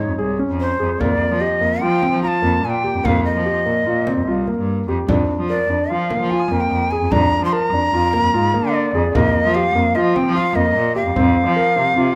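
Moving in a straight 5/4 at 147 BPM, this hopeful, playful contemporary chamber piece, cut from a longer work, sets a breathy bamboo shakuhachi melody with a crisp, chiffy attack up front over warm concert grand piano arpeggios, a bowed gut-string cello bass with a nasal, reedy tone and light vibrato, and a large frame drum played with hard hands in the background of a roomy space, all captured with light reverb and close, detailed microphones as the harmony moves from Dbsus2 through Ebadd9/F and Bb7/F to a closing Fsus4.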